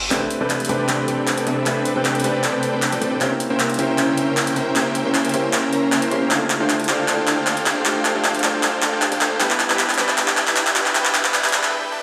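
A dense, compressed supersaw leads this bittersweet, emotional future bass excerpt, its huge, thick, detuned riff sitting up front through a low-pass filter sweep and tape echo. Beneath it, a big-room dance drum kit with layered handclaps and metallic hi-hats drives a half-time feel, playing a drum fill that runs through the whole build-up before a short break at 11.7 seconds. A bright baby grand piano with long sustain carries the accompaniment through tape echo, while a shimmering, ethereal pad holds sustained chords in the background, its dark, granular tone treated with chorus, reverb and its own filter sweep. A deep, boomy 808-style bass sits very quiet underneath, and faint reverse cymbals, risers and swells surface at the start and again from 8.1 seconds. The chords move from Am11 through C7b9 and F69 to Em7/G, and the whole mix is bathed in a wet digital room reverb that gives it the sense of a big sound system in a bare room.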